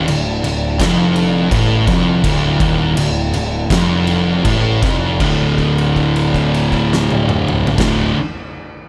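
A slow, straight 4/4 pulse at 80 BPM in D minor drives this ominous, heavy stoner and doom metal excerpt, cut from a longer piece, as the tempo slows down over the first 5.2 seconds before a held note on a D5 chord takes over until about 7.8 seconds. Two thick fuzz guitars grind out the riff, one up front and one in the background, over a round, punchy overdriven bass, while an oversized low-tuned acoustic drum kit with a boomy kick, fat snare, dark cymbals and toms sits up front in a bright, pumping stone room. Beneath it all, a very quiet, deep rumbling drone holds sustained chords with a slow attack and long release, the whole group wrapped in a small room reverb.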